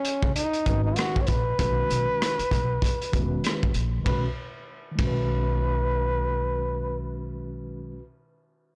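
Smooth and warm, this jazz-hop cut from a longer piece sits in B major at 97 BPM in 4/4, with a 59% swing on the sixteenths and tuning set slightly low at A4 = 438 Hz. A bright, up-front trombone carries the jazz-style solo melody with vibrato, opening over a Badd9 harmony and singing until about 7.3 seconds. Beneath it, a crunchy breakbeat kit of hi-hat, tight kick, ride and rim click sounds gritty and saturated, recorded in a small room with dark cymbals and a rolled-off top, before dropping out at 5.2 seconds. A woody upright bass with steel strings is plucked in a low register and colored by transformer saturation, while a mellow, clean tine electric piano heard through its built-in speakers adds soft accompaniment lower in the mix. Bass and piano carry on to the close at 8.0 seconds, and the whole recording has a blown-out, overdriven character with studio ambience around it.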